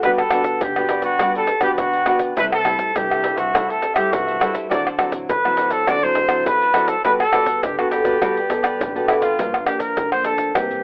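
Bittersweet yet lively, this cut from a longer samba and choro piece moves at 103 BPM in G major, with the home-cassette recording giving it a telephone-like sound. A jazz-style solo trumpet with light vibrato sits up front yet sounds distant and roomy, over a fingerpicked classical nylon-string guitar, a crisp picked cavaquinho in the background that drops out at 9.4 seconds, a woody pizzicato upright bass, and close, dry hand percussion of tube shaker, pandeiro, tamborim and deep surdo. The harmony moves through Gmaj7, C6, D9 and Gmaj9 before turning to Gm7 at 9.4 seconds.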